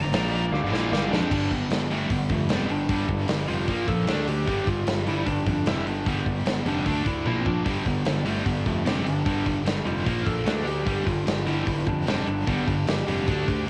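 Swaggering and powerful, this hard rock excerpt charges along at 151 BPM in straight 4/4, opening with a twangy, slightly broken-up lead guitar solo over the full band, as a drum fill leads into the next section at 1.3 seconds, with a second fill at 7.3 seconds. Three distorted rhythm guitars stack their riffs in the background: a double-tracked high-gain part, a scooped high-gain part and a sludgy overdriven one. Beneath them a growly, punchy fuzz bass and a big, up-front acoustic kit with a tight kick and rolled-off top carry a lo-fi, cassette-taped home recording with light reverb.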